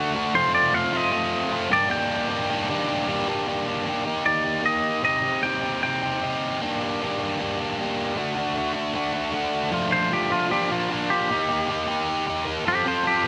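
Set to a straight four-beat pulse, this restless, cool rock passage from a longer piece pairs an up-front, double-tracked overdriven electric guitar riff that runs throughout with a compressed, twangy clean guitar melody bathed in plate reverb, which drops out at 6.4 s before a clean electric guitar solo arrives at 9.7 s, in a moderate studio room.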